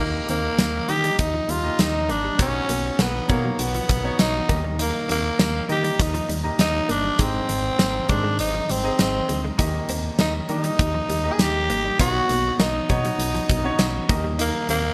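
A straight 4/4 pulse at 100 BPM drives this uplifting, glossy 1980s-style pop cut in Eb major, where a growling, breathy tenor saxophone sings the lead up front over a huge, punchy arena drum kit entering at 0.3 seconds, a round FM bass, a clear grand piano with audible action noise in the background, and a very quiet, clean, direct-recorded electric guitar riff, all bathed in plate reverb and bright digital production with lossy compression artefacts.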